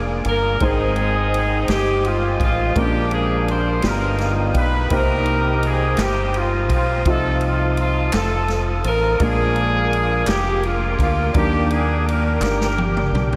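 A huge, dreamy wash of reverb soaks this slow, soulful gospel passage in 6/8, cut from a longer piece and carrying a reverent glow. Up front, a clear horn section carries the melody with light vibrato and a vintage tightness, trailed by a diffuse ambient delay, while a deep, round electric bass sits dark and punchy beneath it. Further back, a worn, woody upright piano, slightly detuned and treated with analog chorus, plays accompaniment beside a mellow, flute-like tonewheel organ holding sustained chords through a slow rotary speaker, its key click audible. A swinging big-band drum kit with a punchy kick, ride cymbal, snare and toms keeps time from a natural studio room and rolls into a fill at 12.4 seconds, while very quiet, crisp group handclaps join from 6.0 to 12.7 seconds. The harmony moves through rich seventh chords such as Bb7, Abmaj7, G7alt, Cm7 and F7/C before settling on Ebmaj7.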